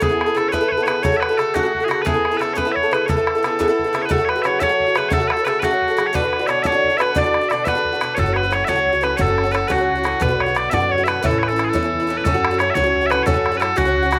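Lively and bright, this Celtic jig in 6/8 moves at 118 BPM, with piercing bagpipes carrying the melody up front while an airy, mellow wooden flute sits behind as a second line and a metallic Irish bouzouki picks out double-string accompaniment, all three touched with slapback echo. A boomy, saturated bodhran drives the percussion throughout, and a growly, dark pizzicato upright bass joins at 8.2 s, moving through chords like F#m, Bm and A. The sound is dry and open, as if captured outdoors, and the passage is cut from a longer piece.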